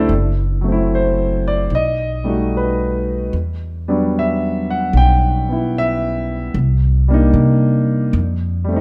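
A moderate large-studio reverb surrounds this tender, intimate jazz ballad, cut from a longer piece and moving at a slow 75 BPM in 4/4 with a gentle swing on the eighth notes. A clear, natural concert grand piano sits up front and plays the accompaniment throughout, moving through F#m7b5, B7b13, Em9, Cm7 and Fadd9. Beside it, a woody, thumpy upright bass with gut strings plucks the low line from start to finish.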